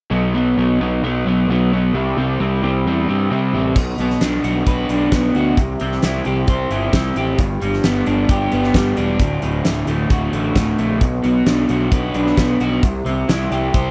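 A straight 4/4 classic rock groove at 132 BPM opens with a crunchy, double-tracked overdriven guitar riff on B5 and C5 power chords, with a growly fuzz picked electric bass underneath. At 3.8 seconds a big acoustic rock kit comes in up front, with a punchy kick, fat snare, hi-hat and crash ringing in a bright stone room, as the harmony moves through Bm, C, G and D. The swaggering, sunny mood is captured in a dry, close 1970s-style studio sound with light reverb, and the passage is cut from a longer piece.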